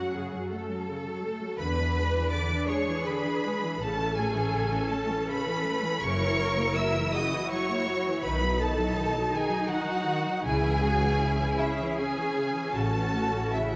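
Classical slow romantic movement for string orchestra, lyrical and tender, unfolding in a rubato 12/8 at 54 BPM over a progression from F#m through E7, A, F#7, B and C#m, with a focused, up-front violin section carrying the melody above a lush second violin line, smooth violas, a close cello section and an even double bass section, all bowed with rich vibrato in a dark production with scoring-stage reverb across 13.8 seconds.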